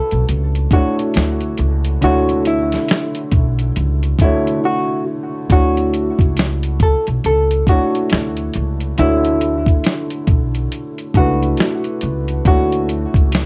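Recorded at home on cassette with light reverb, this dreamy, cosy lo-fi hip hop excerpt sits in D major at 69 BPM in 4/4 with a swung feel over a Dmaj9 chord. A dark, clean hollow-body jazz guitar picks the melody through a low-pass filter and tape echo, alongside a mellow, woody upright piano accompaniment, a pizzicato upright bass with steel strings up front, and a muffled, compressed sampler-style kit with a thumpy kick, medium-tuned snare and hi-hat. A break arrives at 4.6 seconds before a new section begins at 5.5 seconds.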